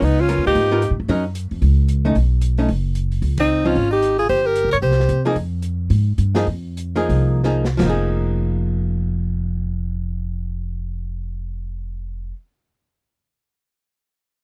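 Smoky, cool small-group swing and bop in F minor at 158-225 BPM, where a clear, punchy alto saxophone with scooped notes carries the melody alongside an edgy, forceful tenor saxophone in two short bursts ending at 5.2 seconds, over a woody pizzicato upright bass that runs throughout, a dark, clean hollow-body archtop guitar comping, and a smooth small-room drum kit with dark cymbals and a boomy kick, all in a dry, close 1970s-style studio sound, with a band accent at 3.4 seconds and a slowdown capped by a drum fill before the drums stop at 7.9 seconds.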